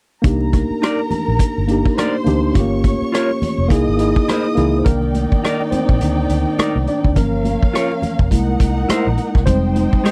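A dry, close 1970s-style studio recording of bittersweet, cinematic soul in C minor at 104 BPM with a 16th-note swing, where a gritty, saturated vintage drum kit with a punchy kick sits up front beside a round, foam-muted fingered bass, a worn and slightly out-of-tune tine electric piano that takes a solo from 4.9 seconds, a dark, clean electric guitar riff entering at 0.8 seconds, a lush bowed string section with expressive vibrato as a second line, and very quiet, ringing high-tuned congas, all moving through Cm9, Gm7b5 and altered C7 chords before reaching Fm9.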